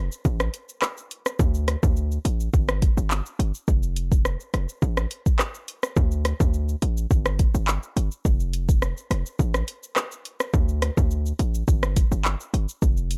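Sultry and tough, this dancehall excerpt moves at 105 BPM in a straight 4/4 in D minor. A hard-hitting 808-style bass, punchy and heavy with a sine body, a noise layer and a fast attack that decays, sits up front from the start, while an electronic afro-pop drum kit enters at 0.1 seconds with a deep kick, dark hi-hats, rim clicks, handclaps and shaker. The production is dark and dry, with little reverb, keeping both parts close and present.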